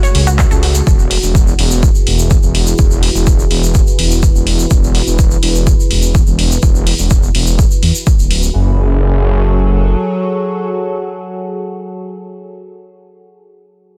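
Dark and dramatic, this melodic techno fragment in F# minor runs at 125 BPM in a straight 4/4, cut from a longer piece. A punchy analog-style electronic kick pairs with a menacing, saturated detuned saw bass that sits up front, rides a filter swell and pumps against the sidechain, while a layered techno kit adds handclaps and metallic hats, both drum parts carrying the character of a small room. A grainy, band-limited egg shaker ticks through the opening passage, and a lush unison pluck with gritty 12-bit sampler texture and digital delay flickers through arpeggios only in the first 0.6 seconds. Above them, an evolving, morphing wavetable pad holds sustained chords with slow attack, chorus and its own reverb, moving from F#madd9 to Eadd9 while a filter sweeps across it until 8.5 seconds. The drums and shaker drop away around 8.5 seconds as the harmony returns to F#madd9, and the pad carries on alone after the bass fades at 9.9 seconds, all framed by digital ambience in a dense, heavily limited modern master.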